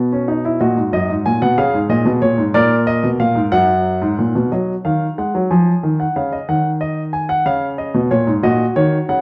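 Classical, baroque-style three-part fugue for solo grand piano, serious and contemplative in mood, moving at 61 BPM in dotted quarters within a straight 6/8. This short fragment of a longer piece lasts 9.2 seconds, with the piano playing alone throughout across a range from F#2 to G#5. Its tone is polished and present, placed up front in a dark production, while a moderate stone-room reverb with a 1.3-second decay gives the notes a sense of space. The harmony opens on Badd9 and passes through D#m, C# and A# before settling on F#add9, then a second phrase begins at 4.5 seconds. That phrase moves from D#m and C# through D#madd11 and A#m/C#, coming to rest on F#/A# at 8.4 seconds.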